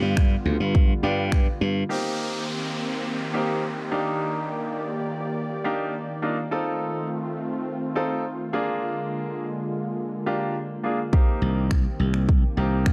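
Energetic and driving, this dance-pop excerpt moves at 104 BPM in a straight 4/4, set in C minor. A clear, polished concert grand piano carries the accompaniment throughout, its short-sustain chords sitting up front with a deep low end. Underneath, a vintage analog pad holds smooth sawtooth chords with a slow attack and a detuned, warbling chorus, and both keyboard parts pump against the kick. A punchy house drum kit of layered kick and finger snaps, together with a bright, growly slap bass, frames the passage at its start, with the drums returning at 11.1 seconds and the bass at 11.4, while an electronic downlifter sweeps through the middle from 1.9 seconds. The harmony travels from G7 to Cm7, then through Ebmaj7, F7 and Bb7 before landing back on Cm7, all set in a dark production with light reverb.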